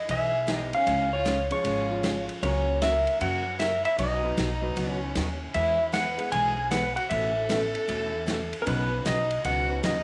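A clean, dark lap steel guitar opens this cheerful, down-home western swing excerpt with the melody, its slide lines shaped by volume swells and a slapback echo, sitting compressed and up front. A clear, focused bowed fiddle plays a second line beneath it from the very start, its light vibrato and smooth top adding a sweet edge. Just after, a bright, full-bodied dreadnought acoustic guitar joins with picked accompaniment and a touch of finger squeak, while a woody, thumpy pizzicato upright bass and a vintage drum kit settle into a swinging groove, the kit's hi-hat, ride and medium-tuned snare carrying dark cymbals and a rolled-off top in a small, pumping room. A slightly detuned upright piano enters at 0.5 seconds, with a warm, natural tone that stays in the background. The harmony moves from Emaj7 through C#, F#/C# and B to E, Aadd9 and Badd9, all under a light studio reverb that gives the band a homey, old-time glow.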